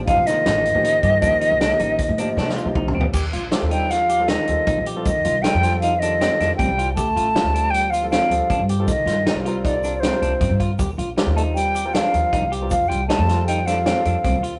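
Through a rough rehearsal-room sound with light reverb and a dulled top end, this driving, bright progressive instrumental in 5/4 at 157 BPM and Eb lydian sets a pure, up-front silver concert flute with vibrato over a woody, thumpy pizzicato upright bass, a vintage drum kit with a punchy kick that plays a fill from 2.4 to 3.1 s, clean picked electric guitar arpeggios, a clear baby grand piano and a close-miked trombone second line sitting in the background, and a grainy, very quiet egg shaker, with chords moving from Cmadd9 through Eb, F7, Dm7 and Cm7.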